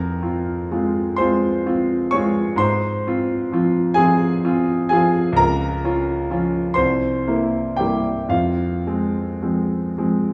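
A romantic classical nocturne for solo piano in F minor, this melancholic, mournful fragment moves in a slow 6/8 at 36-44 BPM in dotted quarters, with a free rubato feel. The grand piano sounds clear, smooth and vintage, placed up front with a short sustain, and spans C2 to Db6 while moving from Fm through Fm/Ab and Bbm/Db to a C7 at 6.8 seconds before settling back on Fm at 8.3 seconds. A wet recital-hall reverb with a 1.6-second decay surrounds the playing throughout this brief cut from a longer piece.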